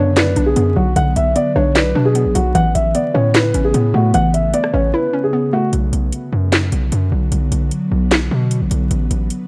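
Dark vinyl crackle hangs over this menacing, eerie trap excerpt at 151 BPM in a half-time feel, where a mellow, intimate baby grand piano carries the melody over a hollow, detuned square pluck with chorus and an ethereal, evolving pad bathed in ensemble chorus and reverb, while a punchy, heavy 808 bass and a trap kit of sharp snare, metallic hats, handclaps and rim clicks sit up front until the drums mute at 4.9 seconds and the piano and pluck stop at 5.7 seconds, leaving pad, bass and returning drums for a break that moves from B minor to A add nine.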